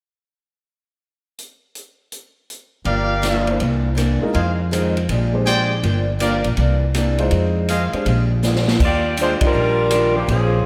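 A swinging 4/4 pulse at 162 BPM drives this energetic, joyful big band excerpt in Eb major, cut from a longer piece and set in a dreamy mix soaked in lush hall reverb. The drum kit opens alone at 1.4 seconds, with a punchy kick, medium-tuned snare, hi-hat, ride, crash and rim clicks in a natural studio sound. A woody pizzicato upright bass sits up front alongside a boxy parlour-style steel-string guitar with audible finger squeak, a smooth vintage grand piano and tight, present trumpet stabs carrying tape echo. The harmony circles through Gm7, C9, Fm7 and Bb13 before a drum fill leads to a resolution on Ebmaj9 at 8.8 seconds. There the saxophone section takes the melody up front, with light vibrato, a smooth top and its own tape echo, and the full band hits an accent at 9.4 seconds.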